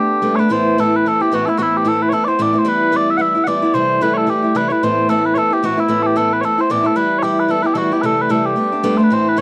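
Cheerful and bright, this short Celtic folk reel clip swings lightly as mellow, sweet small bagpipes carry a continuous solo melody up front over a boxy, picked old ladder-braced acoustic guitar, both heard close and dry in an intimate 1970s-style studio sound as the chords move through Gadd9, Amadd9, Em and C6.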